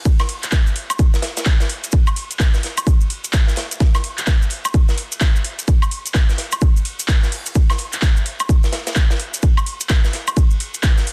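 A punchy, tape-warm electronic kick sits up front from the opening moment of this bouncy, aggressive house excerpt, driving a swung 4/4 groove alongside a layered house kit of handclaps, woodblock and metallic hi-hats. Beneath them, a polished acoustic kit adds bright, airy cymbals, ride and a medium-tuned snare, its high-passed cymbals and hats pumping under sidechain compression, while grainy, mellow maracas sit close and dry. The whole short cut has a small-room feel and a dense, heavily limited modern master.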